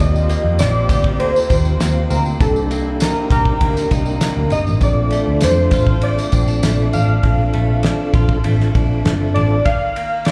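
Heard through a club PA with light room reverb, this sunny, nostalgic indie and bedroom pop fragment moves at 99 BPM in Bb major, passing through Eb6, Cm7 and Bbmaj7 before landing on Eb5. Warbly, detuned lo-fi synth keys carry the melody, drenched in lush chorus, plate reverb and slapback and tape echo. Beneath them sit a flute-like tonewheel organ on slow rotary, a faint vintage analog pad that ends at 7.2 s, and a bright, compressed clean guitar recorded direct. Underneath, a round, foam-muted picked bass sits up front alongside a cloth-damped, thuddy kit of tight kick, fat snare and dark ride, while a jingly, band-limited tambourine drops out at 7.1 s.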